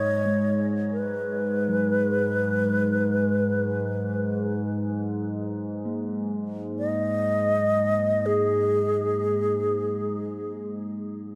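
Bathed in a huge ambient reverb, this haunting, spacious fragment of free-time world meditation music in G# minor sets a breathy alto flute with vibrato and delay up front over a nasal, evolving analog drone on G#2 treated with chorus, while a metallic bronze singing bowl rings with slow beating in the background and the flute's melody ends at 10.5 s.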